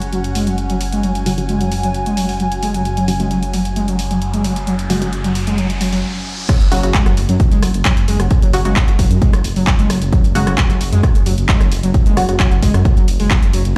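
Driving peak-time techno opens on an intense, industrial bed: a thick, menacing detuned saw bass pumping against the sidechain, a techno drum kit of hi-hats, handclaps, rim clicks and crash, and a gritty, screaming overdriven synth lead whose riff carries a filter sweep, lush chorus and dub echo. Behind them sit an eerie metallic drone and an ethereal, airy pad, both drenched in their own reverb and chorus, while muted, deep dub chord stabs with tape echo enter at 1.3 seconds. A riser climbs from 3.9 seconds as the drone and pad fall away, and a brief stop opens before the drop. At 6.5 seconds a heavy, up-front electronic kick lands alongside the bass, lead, stabs and kit, with the stabs dropping out at 12.4 seconds and the rest carrying on to the end. The drums have a tape-warm, small-room character, and the whole cut sounds as if blasted through a big sound system in a bare stone room.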